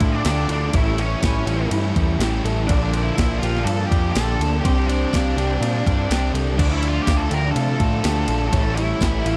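Hazy and brooding, this shoegaze and dream pop rock excerpt moves at 123 BPM in D minor over a Dm, A7, Bbmaj7 and Csus2 progression, with a round, punchy deep dub picked electric bass up front and a thumpy, tape-tinged clean 12-bit digital drum machine playing crash, kick, ride and snare, while a dark octave-fuzz lead guitar with distortion and analog delay carries the melody above background riffs from a double-tracked crunchy overdriven guitar, an overdriven electric guitar with reverse reverb and an overdriven semi-hollow guitar with subtle chorus, plus lo-fi arpeggios from an electric guitar through a small old amp with analog chorus and delay, a very quiet, lush sawtooth string machine holding sustained chords, and a faint jingly tambourine entering at 0.3 s, set in a dry, dusky production.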